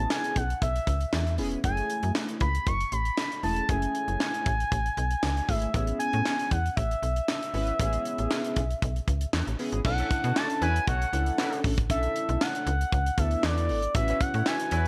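A straight 4/4 groove at 117 BPM drives this slick, danceable slice of early-eighties boogie funk, built on a tight, up-front drum kit with a high-tuned snare, handclaps, hi-hat and crash bathed in gated reverb, and a snappy, metallic FM bass with a digital bite. A glossy, full-bodied chorused polysynth with a filter sweep holds down rootless major-seventh and minor-ninth chords while a smooth, expressive sawtooth lead sings the melody up front with vibrato and chorus. At 10.0 seconds, just after the harmony moves to Bm11, a tight, vintage horn section with light vibrato slips in underneath as a second line.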